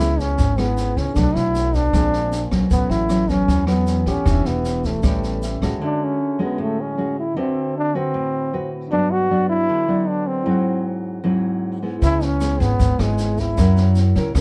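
A close-miked solo trombone with vibrato carries the melody in this sunny, relaxed bossa nova at 155 BPM. It is backed by a full-bodied, thumb-plucked nylon-string guitar with audible finger squeak and a bright, clean tine electric piano with subtle chorus sitting in the background. Woody, thumpy pizzicato upright bass, a distant, roomy jazz kit with high-tuned snare, rim click and boomy kick, and a grainy shaker set the groove, drop out around 5.7 seconds as a short electric piano fill winds down, and return at 12.0 seconds, all within a dark production with light reverb.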